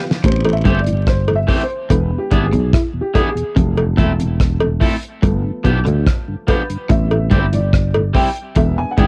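A drum fill opens this laid-back, meditative roots reggae excerpt in A minor at 72 BPM, as a dry, fat-snared 70s kit, a growly fretless bass, a twangy clean guitar riff with tremolo, a jawbone-type rattle and cowbell, a slightly broken-up guitar with tape echo, and a mellow tonewheel organ on slow rotary settle over Am7, E7, Fmaj7 and G7 beneath a dark, woody, slightly detuned upright piano that plays a solo from 0.2 seconds, all caught on a dry home cassette recording.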